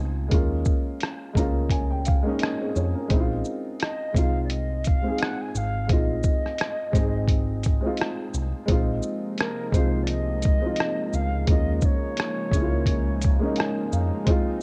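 At 86 BPM in 4/4 with a gentle 16th-note swing, a compressed, pitched-down sampler-style kit of thumpy kick, rim click, hi-hat and shaker sits up front, muffled by cassette tape. This melancholic, nostalgic lo-fi hip hop fragment in Bb minor is cut from a longer piece. A dark, woody upright piano with audible action noise and short sustain carries the accompaniment through a low-pass filter and tape haze, adding a fill at 1.0 seconds over a harmony that moves between Eb9sus4 and Bb9sus4. Beneath it, a round, amped hollow-body electric bass holds the low end. A distant, airy jazz flute with expressive vibrato takes the melody at 3.8 seconds, softened by filtering and analog delay, and at 9.1 seconds a detuned, warbling pad with slow attack, chorus and its own reverb fills in sustained chords. The whole home-recorded cassette sound is wrapped in light reverb.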